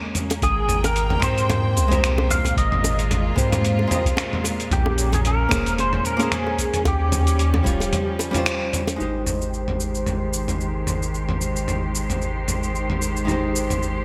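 Sunset chillout in Ab major at 112 BPM with a swung 16th feel, blissful and warm, cut from a longer piece and set in a lush digital hall with a gleaming 1980s-style sheen. A deep analog electronic kick joins a gritty, tape-warm sampler kit of finger snaps, hi-hat, shaker and toms that sits up front over a round sine sub bass, while tight, high-tuned bongos stay in the background and a clean, dark hollow-body archtop guitar with digital delay and a biting, bowed string section hold chords from Abmaj9 through Bbm9 and Eb13. A fingerpicked pedal steel carries the slide melody with ensemble chorus and delay until 8.4 seconds. The kick drops out at 7.8 seconds before a break with a band accent at 8.5 seconds. From 9.0 seconds a filter sweeps across the strings on Abmaj7, and at 9.7 seconds an airy, breathy wind-like noise texture drifts in.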